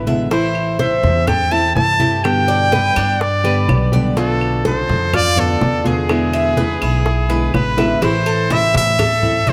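Danceable and nostalgic, this excerpt from a longer piece is Cuban son in the guajira vein, moving at 124 BPM in a straight 4/4 in A minor. A fingerpicked nylon-string guitar and a picked Cuban tres open together, the guitar small-toned and the tres metallic and bright with its double strings, some doubled at the octave, spinning arpeggios above. An upright bass plucked on gut strings gives a dark, thumpy, woody foundation through the Am, G, Bm7b5 and E7 progression that returns to Am at 8.0 seconds. In the background, tight, high-tuned bongos and cowbell sit close and dry, low-tuned congas played with soft hands sound distant in a large room, and claves enter at 0.6 seconds. Up front, a close-miked solo trumpet carries the melody from 0.3 seconds in a pop style, with vibrato and scooped notes. A drum fill at 7.8 seconds leads into the next section, and a moderate plate reverb lends the whole arrangement a gentle glow.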